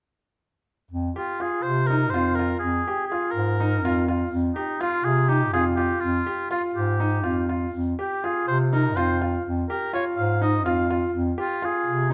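Hypnotic and restless, this short cut from a longer contemporary chamber piece moves in an uneven 7/8, with a bass clarinet carrying the low line from 0.9 seconds in a smooth, jazz-inflected voice full of vibrato and scooped notes, while from 1.2 seconds a clear oboe sings the melody with soft attacks and classical poise over brilliant concert grand piano arpeggios, the chords circling F minor colours inside a dark production and a moderate recital hall reverb.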